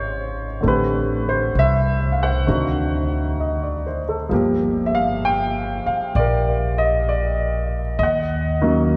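Jazz ballad at a slow 65 BPM in 4/4 with a gentle swing, tender and intimate, cut from a longer piece and tuned to A4 = 445 Hz, where a warm, present grand piano sits up front comping through Dbmaj9, Am7, D7b9, Gm7 and Ebm7 while a woody, thumpy pizzicato upright bass on gut strings supports it from below, both bathed in a wet cathedral reverb that gives the church-like room a long, glowing tail.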